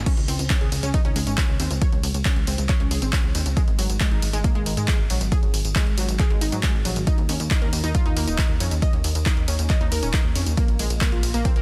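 This soaring, euphoric uplifting trance excerpt opens with a plucky analog bass, punchy and funky with a wave-folded edge and a mellow decay, pumping against the sidechain. Almost at once an overdriven electronic kick drum lands in a straight 4/4 pulse, joined by a punchy analog drum machine carrying crash and ride cymbals, handclaps, hi-hat and tambourine, both drum parts roughened by overdrive and carrying the air of a large room. Above them, a round, vintage-sounding analog pluck spins arpeggios, detuned and warbling through chorus and delay, its bright filter sweep pumping with the sidechain. The harmony moves from Db5 to Ab5, Eb5 and Bb5, giving the short passage a lifting, hands-in-the-air momentum. The mix is dry and dense, pressed into a heavily limited modern master, and the excerpt ends at 11.6 seconds as part of a longer piece.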